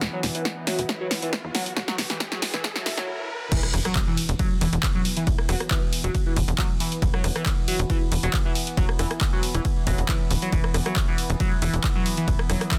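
A dense, heavily limited digital sheen frames this short cut from a longer piece of driving peak-time techno, industrial and intense in mood over a straight 4/4 pulse. It opens on a build-up, with a drum fill from the layered, overdriven techno kit of snare, handclaps, hi-hat, rim click, ride and crash, while a riser and swell climb in the background and a filter sweep moves over the synth lead before a brief stop at 3.1 seconds. The drop lands at 3.5 seconds with an impact, and the punchy, overdriven electronic kick sits up front beside a tight, nasal sequencer bass whose sawtooth and square-wave plucks pump against the kick. Above them a gritty, screaming, guitar-like synth lead riffs in a narrow range, distorted and bright with phaser, vibrato and tape echo. Far back, an analog drone of pulse-width-modulated tones breathes with slow attack, chorus and long release, filling the space beneath the assault.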